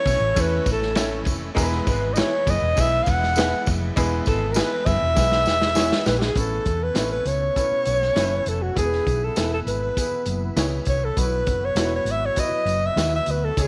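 Warm and uplifting, this excerpt from a longer piece is uptempo 1960s-style soul in E major, moving at 100 BPM in a straight 4/4. A breathy, intimate alto saxophone carries the melody up front, its subtone sound, soft attack and scooped notes colored by vibrato and a slapback echo. Beneath it, a crunchy breakbeat drum kit with dark cymbals, a tight kick and a saturated, gritty character pairs with a round, hollow-body fingered electric bass, while a clear baby grand piano with short sustain supplies accompaniment and a jingly tambourine adds bright shimmer. A very quiet overdriven tonewheel organ holds thick sustained chords with chorus vibrato, and a mellow, clean electric guitar adds soft stabs from 1.0 to 13.1 seconds. The harmony moves from A to E, then after a drum fill starting at 5.2 seconds, a second section opens at 6.4 seconds on Aadd9, returning to E and resting on Bsus4, all set in light reverb and small room ambience.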